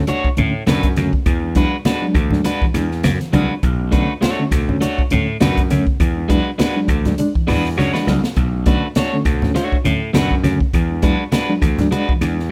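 A sly, funky groove at 101 BPM in 4/4 swings its sixteenths, driven by a big-band drum kit with a punchy kick and airy, polished hall sound, plus a drum fill at 7.8 seconds, while low-tuned, thick-skinned congas sit close beside it. Up front, a growly, overdriven slap bass and a slightly broken-up, compressed electric guitar with harmonic tremolo work over a Bm7 to E9 vamp in B dorian. A reedy, mellow electric piano adds clean stabs through fast tremolo, all heard in a moderate room within a rough home demo mix cut from a longer piece.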